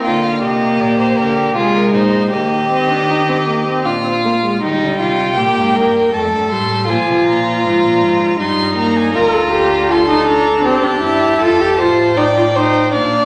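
A solemn, serious baroque-style fugue for string quartet opens with all four bowed players sounding together at a measured 79 BPM in 3/4, tuned to A4 = 436 Hz: a focused first violin with vibrato carries the high melody above an expressive, softly attacked second violin with a smooth top and a dark, close viola gliding between notes, both up front, while a rich cello holds the bass, all set in a wet scoring-stage reverb as the harmony moves from Bb through Eb and F to a closing F7 in this cut from a longer work.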